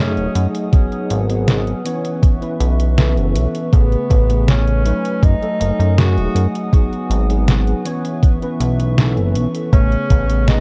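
This nostalgic, woozy vaporwave fragment opens at once on a breathy tenor saxophone, a tine electric piano, a warbling tape-like pad and a chorused synth bass, all sounding from the first moment. The drum machine's detuned 8-bit hi-hat and medium-tuned snare arrive at 0.2 seconds, and a thumpy electronic kick follows at 0.7 seconds, both sampler-style, up front and touched with studio reverb. At a relaxed 80 BPM in straight 4/4, the electric piano plays clean accompaniment through built-in speakers, dressed in ensemble chorus, grainy 12-bit sampler grit and analog delay. Beneath it, the glossy, nasal synth bass sits prominently, with a plucked filter and a moving notch. The mellow pad holds soft, wave-folded sustained chords with a long release and its own reverb, while the distant, roomy saxophone carries a jazz-style solo melody with light vibrato, scooped notes and tape echo. The harmony cycles through F#m69, G#m7, B9sus4 and Amaj9 twice, and the whole fragment has a dark, cassette-tape production cut from a longer piece.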